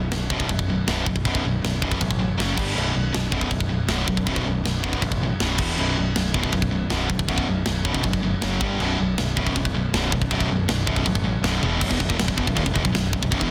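A bright, high-gain distorted guitar sits up front, driving a dark, epic heavy metal riff built on power chords that circle around B5 with brief pushes through F#5, G5 and E5. Beneath it, a second, sludgy guitar adds a murky overdriven layer at a very low level, while a punchy picked electric bass growls with overdrive in the low register. The tight metal drum kit, recorded in a big room with a mid-forward character, features a medium-tuned snare, a tight kick with a touch of soft clipping, and china and crash cymbals alongside the toms. A drum fill at 11.6 seconds leads into a new section at 11.8 seconds, where the harmony settles on B before the clip breaks off at 13.5 seconds. The mix is dense and heavily limited, with studio reverb giving the straight 4/4 groove a modern, weighty finish.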